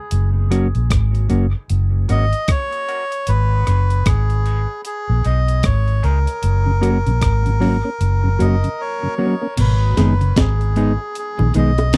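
This dub reggae excerpt moves at a slow 76 BPM in G# minor, with a swung sixteenth-note feel and a hypnotic, spacious mood as it alternates between F# and G# minor chords. A dark, round, foam-muted fingered bass sits up front beside a gritty, compressed, pitched-up breakbeat kit with a thumpy kick, a medium-tuned snare, rim clicks, hi-hat and crash, its sound re-recorded in a large room. A mellow electric guitar, played with the fingers, adds accompaniment through vibrato, a high-pass filter and dub echo, and a filter sweep colors the opening stretch. A reedy, breathy, nasal melodica takes the melody from 2.1 seconds, trailing dub echo. Through the middle, a lightly overdriven tonewheel organ turns slowly through a rotary speaker with chorus vibrato. At 9.6 seconds a picked, clean guitar adds quiet arpeggios with subtle chorus. From 10.0 seconds, tight, high-tuned bongos played with soft hands echo in the background, all captured in a dry, close 1970s-style studio sound.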